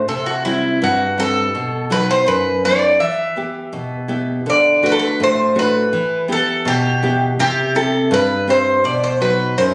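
A picked Greek bouzouki carries the melody up front, its metallic double strings, some doubled at the octave, giving each line a ringing edge in this brooding, bittersweet piece of Greek folk music. Beneath it, a nylon-string guitar fingerpicks the accompaniment in a deep classical manner, its tone bright and full-bodied, also close to the listener. Both instruments play together from start to finish of this short passage cut from a longer piece, set in a straight two-beat metre. The harmony moves through C, B and E minor, then D, E minor, C and B, with the second phrase beginning at 4.5 seconds. The sound has the intimate feel of a small room, captured on a phone with added studio reverb and compression.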